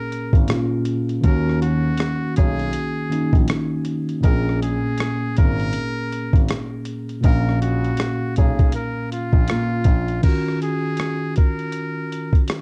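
Hazy and melancholic, this lo-fi hip hop excerpt moves at 80 BPM in 4/4 with a swung sixteenth feel, its chords drifting from Bbm7 to Ebm7 and back before opening onto Ebm9 at 10.2 seconds. A buzzy, thin trumpet with a metal mute carries the soft-edged jazz melody quietly in the mix, while a bright, clean tine electric piano sits up front in accompaniment, both filtered and bathed in plate reverb. Beneath them a muffled, compressed sampler-style kit thumps with kick, hi-hat, rim click and crash, and a dark, mellow grand piano with audible action noise supplies the deep bass line until 10.2 seconds, all within a dark, warm production.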